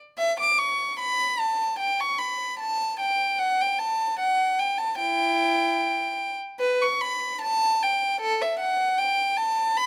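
Flowing and dance-like, this short excerpt from a baroque-style suite movement for unaccompanied violin unfolds in a free, rubato 4/4. A single player draws a rich, reedy gut-string tone in period style, heard close and up front through detailed microphones with a touch of light reverb.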